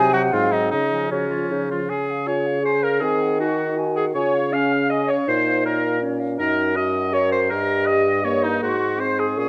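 In a straight 3/4 at 160 BPM, this quick, urgent and restless classical-period wind quintet excerpt in Db major moves from Ab7 to Db, on through Bbm and Ebm/Gb, and back to Ab7, with an airy, tongued concert flute carrying the melody with expressive vibrato from a distance, an oboe tracing a warm second line with a soft attack, a clear, roomy clarinet and a French horn with a touch of vibrato filling out the accompaniment, and a mellow, up-front bassoon anchoring the bass, captured by close, detailed microphones in light reverb.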